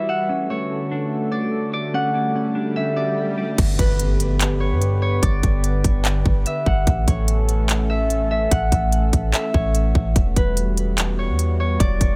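A half-time 146 BPM groove in 4/4 carries this floating, blissful hip hop cloud-rap excerpt in G lydian, where a bright, ringing concert harp melody with delay and a warbling, nostalgic tape-like pad with sidechain pumping open beside a dark, compressed clean electric guitar arpeggio that stops at 3.6 seconds, as a very quiet swell and impact usher in an up-front trap drum kit with a hard-clipped kick and crisp hats plus a deep, round 808-style bass, set inside a digital ambience.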